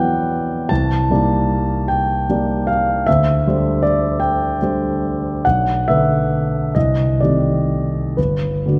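In a lilting 6/8 with free, breathing rubato, this short passage from a longer impressionist solo piano piece drifts through rich extended chords such as Cm9, D11 and Bm7 before settling on Gmaj9 at 8.2 seconds. The mood is luminous and serene. A clear, intimate grand piano sits up front, spanning low bass to bright upper register, its natural tone carrying audible action noise. It rings out in a wet concert hall reverb with a long, glowing tail.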